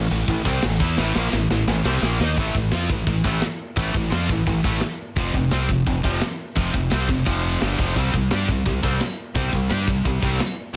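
This relentless, epic heavy metal excerpt opens with three picked, distorted guitars playing a riff together, anchored by a growling fingered electric bass that sits up front with an overdriven, amped bite. A tight metal drum kit enters at 0.3 seconds, and a drum fill from 1.0 to 2.4 seconds carries the music into its second section. Two of the bright guitars stay in the background: one is double-tracked and overdriven, and a heavier, high-gain one is distorted. A third high-gain guitar is very quiet. The drums sound gritty and saturated in a studio room, with a rolled-off top, a medium-tuned snare, crash and hi-hat, and soft clipping on the kick. The harmony moves from A minor to F and C power chords in a dry, dense, heavily limited modern master.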